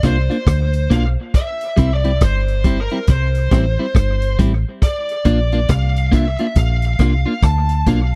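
A slow, swung 69 BPM roots reggae groove in 4/4 comes from a vintage acoustic drum kit with a punchy kick, hi-hat and rim click, sitting up front beside a deep, dark, round fingered electric bass that carries the low end in Bb lydian. A clean, compressed electric guitar picks the accompaniment with dub echo, while a distorted, high-gain lead guitar sings the melody through its own dub echo, moving over chords of Bb, C and back to Bb at 4.8 seconds. The mood is uplifting and sunny, captured in a dry, close 1970s-style studio sound in this short cut from a longer piece.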